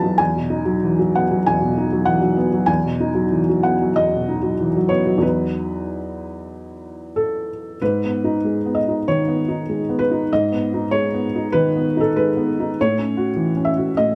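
A felt-muted upright piano plays alone in this brief neoclassical minimalist excerpt, its soft, boxy tone sitting up front with audible action noise in a close, dry room, moving at a rubato 96 BPM in 4/4 through B6/E, G#m and F#m7/A from E2 to B5 with a hopeful, tender feeling, the second section arriving at 7.8 seconds.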